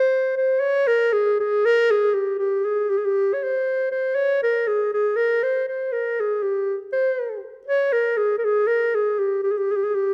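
A solo clarinet opens this Balkan folk passage in free time, its dark tone capped by a smooth top as it sits up front within a narrow span from G4 to Db5. The playing is classical in style yet restless and virtuosic, and the clarinet carries the full 10.1 seconds by itself in this fragment cut from a longer piece. Close, detailed microphones catch the instrument, while a moderate recital-hall reverb of about 1.6 seconds gives it room to breathe.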